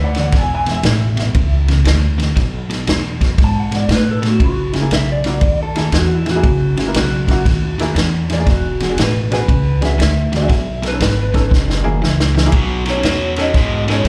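Heard as a live club gig through the venue's PA with roomy reverb, this gritty, swaggering electric blues shuffle swings, anchored by a woody, thumpy upright bass and a punchy, up-front vintage kit of kick, snare and ride. A bright, crunchy overdriven guitar picks out a low riff with slapback echo, while a slightly broken-up, lo-fi lead guitar carries the melody through lush chorus and slapback. A worn concert grand with deep bass enters at 4.7 seconds as accompaniment, and the drums and piano each add a fill near 11.5 and 11.8 seconds in this section cut from a longer piece.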